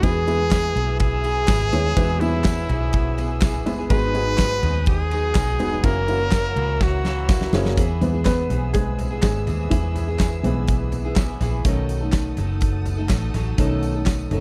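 A bright, up-front trumpet carries the melody from the opening, its smooth top and vibrato riding over a woody upright piano, a picked steel-string acoustic guitar riff with audible finger squeak, and a round, foam-muted electric bass. This is uplifting, hopeful piano-driven pop at 124 BPM in a straight 4/4, moving from E through G#m7 to F#7. A huge arena drum kit with a fat snare and punchy kick sits up front, bringing handclaps, hi-hat, ride cymbal and toms. A jingly tambourine and a distant, expressive bowed string section with portamento linger in the background. During a drum fill from 6.8 seconds, the trumpet stops at 7.5 seconds, and the upright piano takes a solo from 7.8 seconds over E and B7. Cut from a longer piece, it has the dry, close sound of a 1970s-style studio in a small room.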